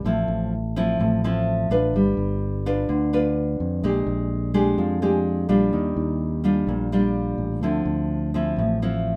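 A fingerpicked nylon-string guitar carries the accompaniment in this romantic, sunny bossa nova fragment, its woody, deep classical tone and old strings sitting up front as it moves through Dm9/A, G7, Bb6, Ebmaj9 and back to Dm9 at a straight 127 BPM in 4/4. A fingered electric bass plays beneath it for the full 9.2 seconds, warm, direct and amped, close in the mix. Moderate studio reverb gives the pair a snug sense of room, and the tuning sits slightly high at A4 = 445 Hz.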